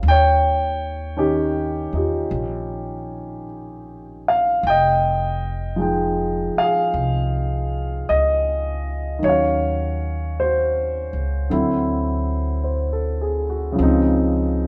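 A large studio's moderate reverb surrounds a band playing live in one room, with a dark, mellow concert grand piano and a woody, thumpy upright bass on gut strings both sitting up front. This melancholic, smoky jazz ballad moves at a slow 52 BPM in 4/4 with a swung eighth-note feel, the piano accompanying with rich ninth chords over the plucked bass from 0.0 to 14.7 seconds. After an opening on Eb9, the harmony settles into F minor at 4.6 seconds and drifts through Ebm9 and D9 to a Dbmaj9 at 13.8 seconds in this fragment of a longer piece.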